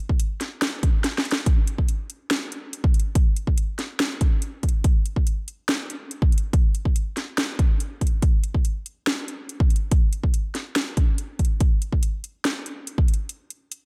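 Future bass in a euphoric, bright half-time feel, this short cut from a longer piece sets a punchy, layered electronic kick up front beside a trap kit of sharp snare and metallic hi-hats, all within dark, warm digital ambience, with a brief drum fill during a break at 1.0 seconds and another break at 13.3 seconds.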